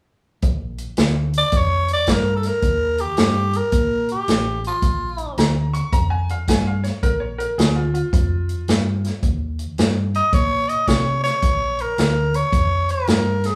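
Soulful and swaggering, this electric blues shuffle moves at 109 BPM in 4/4 with a swung eighth-note feel, cut from a longer piece and tuned slightly sharp of standard pitch. A swinging big-band drum kit and a vintage muted fingered electric bass hold the groove from start to finish, the kit sounding roomy with a boomy kick, medium-tuned snare and rolled-off top, while the foam-muted bass comes across dark, round and punchy. A growling tenor saxophone takes the lead at 1.4 seconds, raspy and gritty in a jazz solo style, then returns at 10.2 seconds to carry the phrase to the end. Between its two statements, a bright upright piano steps in with a brilliant, woody second line. The harmony rocks between Bb and Eb, and the band sounds as if it is playing live together in a small room with moderate studio reverb.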